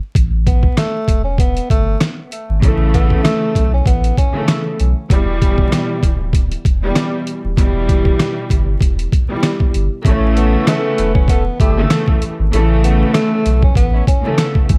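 Boom-bap hip-hop at 97 BPM with a reflective, moody cast, built on a gritty, pitched-down sampler-style drum kit with a thumpy kick and a deep, round sub bass that run from start to finish under a dark, vinyl-crackled production. A breathy tenor saxophone, played with subtone, scooped notes and a touch of analog delay, states the melody at 0.5 seconds, while a lush, woody string section settles in at 2.6 seconds over the A and Em harmony. After the turn back to A, the saxophone returns at 10.4 seconds alongside a mellow jazz-style horn section adding octave-doubled stabs, before this short cut from a longer piece ends.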